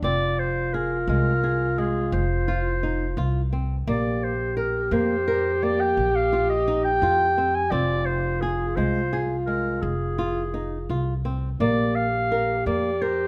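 A mellow, punchy clarinet carries the melody up front in this restless, playful chamber piece in 11/8 at 171 BPM, joined by a distant French horn with light vibrato on the second line, thumb-plucked flamenco guitar arpeggios and a woody, growly pizzicato upright bass, all in Bb mixolydian over Fm and Bb5 chords with light reverb and close, detailed microphones in this cut from a longer work.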